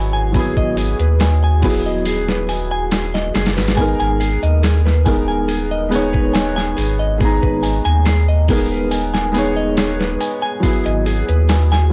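Trip hop at 70 BPM in G# minor, this melancholic, dark excerpt from a longer piece sets a felt-muted upright piano, soft and intimate with harmonic tremolo, 12-bit sampler grit and tape echo, over a deep, round dub sub bass warmed by tube saturation, while a semi-hollow electric guitar plays clean, fingered arpeggios through analog delay. A thumpy, overdriven boom bap drum kit with a medium-tuned snare enters at 0.3 seconds as the chords move from Eadd9 to G#madd9 and back at 10.6 seconds. The sound is dry and gritty, with transformer saturation and vinyl crackle.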